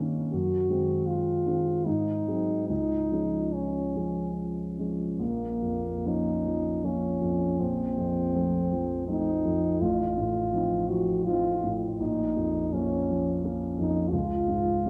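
Tender and serene, this romantic classical duo, cut from a longer work, moves in an unhurried 3/4 at 66-88 BPM with a flexible rubato feel. A dark, vintage-toned baby grand sets out the accompaniment from the start with long sustain, and a mellow French horn joins at 0.3 seconds to carry the melody with a distant, roomy character. The music begins in Db major and turns to Bb minor at 5.2 seconds before settling back on a Db chord near the close, all wrapped in a lush concert hall reverb.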